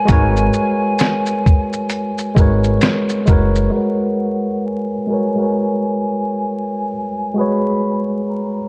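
A breathy, hollow jazz flute and a worn, slightly out-of-tune tine electric piano open this melancholic, hazy lo-fi hip hop excerpt on a lingering minor eleventh chord. The piano is lightly overdriven and up front, while the flute sits distant and mellow, with vibrato and tongued notes, softened by a low-pass filter and analog delay. Almost at once a pitched-down, muffled sampler-style drum kit enters with a thumpy kick, fat snare, hi-hat and shaker, swung on the sixteenths, alongside a woody pizzicato upright bass in the low register. Finger snaps, close, dry and barely audible, add a human touch for a short stretch. At 3.7 seconds the drums and bass drop away, leaving the flute and electric piano under a filter sweep until the fragment ends at 8.7 seconds, all framed by vinyl crackle and light small-room reverb.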